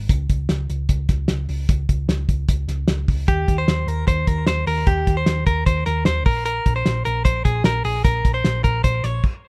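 A round, dark picked bass from a hollow-body short-scale instrument opens this bright, youthful stretch of jangly indie pop, joined almost at once by a cloth-damped, thuddy drum kit with a fat snare, tight kick and dark cymbals sitting up front in a small room. At 3.3 seconds a clean, twangy electric guitar recorded direct enters with compressed, scooped arpeggios, moving from Eb to Bbsus2. The whole has the rough feel of a home demo cut from a longer piece.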